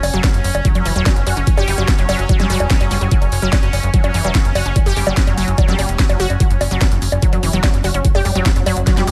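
Psychedelic trance at 146 BPM in a straight 4/4, this intense, alien excerpt is cut from a longer piece and sits on an F#5 chord, driven by an up-front, knocking overdriven kick and a layered drum kit with a cracking snare, bright hats and bongos, and it closes on a drum fill at 8.9 seconds. A punchy, funky analog bass with a detuned sawtooth-and-square tone and a moving notch plucks along underneath, while a lush unison pluck riff, wave-folded and ring-modulated, rides a tape echo and pumps against the kick. Behind them, a resonant, bubbling sawtooth texture with random filter steps holds sustained chords through chorus and its own reverb, all in a dry mix marked by lossy compression artefacts.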